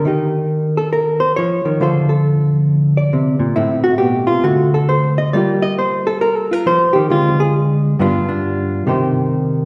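Playful and sophisticated, this short solo jazz passage, cut from a longer piece, moves at 136 BPM in a swung, rubato 4/4 and is tuned to A4 = 435 Hz, with a dark, clean, compressed hollow-body electric jazz guitar played fingered and up front across 9.7 seconds, ranging from G2 to Eb5 through chords such as Eb7, Dm7, Gm7, Dm7b5 and G7 before settling on Cm, all set in the wet reverb of a recital hall.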